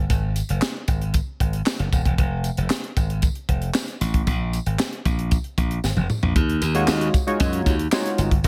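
Slick and danceable, this early-eighties boogie funk excerpt in Eb minor grooves at 115 BPM on a bright, punchy glassy slap bass up front and a tight, dry funk kit of handclaps, hi-hat, high-tuned snare, kick and toms with gated reverb, over a jingly tambourine in the background and chords moving from Ab5 through Fm and Bb5, before a drum fill at 5.8 seconds leads to an Ebm11 where a glossy, retro chorused polysynth with sawtooth and pulse-wave tones and a filter sweep enters at 6.7 seconds.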